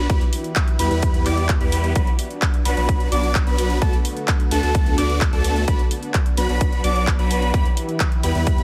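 Lightly reverberant digital ambience frames this anthemic, powerful slice of festival progressive house in B minor at 129 BPM, tuned to A4 = 435 Hz, as sidechain pumping breathes through the pad, lead, chords and bass. Huge detuned supersaw chords carry the riff through phaser and digital delay over an Em, Bm, D6, Bm, Em progression, while a bold, dark sawtooth lead with vibrato spins high arpeggios through its own delay, and a warbling vintage pad with chorus holds slow-attack chords in the background. From 0.1 s, a punchy, overdriven electronic kick sits up front beside a layered big-room kit of handclaps and hi-hat, all anchored by a deep, saturated sine sub bass.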